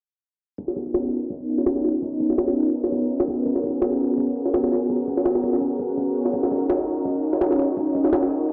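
A lush hall reverb and a large studio space wash over this atmospheric, frenetic drum and bass excerpt at 167 BPM, heard as if played through a big sound system in a bare room. A thick, warbling sawtooth pad with chorus holds sustained chords from Bmaj9 through Abm11/Cb to Ebm7, while a gritty, pitched-up jungle sampler-style kit with a thumpy kick, high-tuned snare, hi-hat and ride drives from 0.6 s to 8.5 s. A filter sweep runs across the whole passage, and both parts sit up front.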